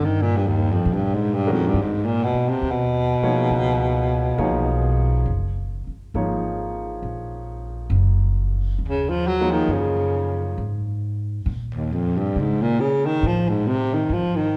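A breathy baritone saxophone carries the melody up front in this tender, romantic jazz ballad excerpt, its mellow subtone, soft attack, vibrato and scooped notes unfolding over a slow 68 BPM swing in 4/4. A woody pizzicato upright bass holds the low end throughout, while a clear, natural upright piano accompanies from 1.5 to 10.6 seconds through chords such as Ebadd9, Gbmaj9 and Ebm7. The whole passage sits in a wet recital hall reverb that gives it the spacious sound of a church or concert hall.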